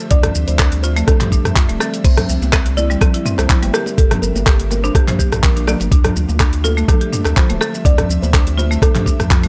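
A knocking electronic kick sits up front and drives this short afro house cut at 124 BPM in D minor, with a light swing on the sixteenths and a driving, warm mood. Beneath it, a round sine sub bass with tube saturation and sidechain pumping anchors the harmony as it moves from Dm11 through C9 and Gm7 back to Dm11. A buzzing marimba struck with hard mallets plays woody, band-limited arpeggios with tape echo, while a mellow kalimba adds a soft, plucked melody in the background, also fed through tape echo. An ethereal, airy pad holds sustained chords far back, shimmering with ensemble chorus, phaser, built-in reverb and sidechain pumping. A layered, overdriven deep house kit of crash, handclaps, hi-hat, rim click, shaker and toms fills out the groove, and ringing, compressed congas join in the background at 2.2 seconds, all within a dry, gritty digital ambience.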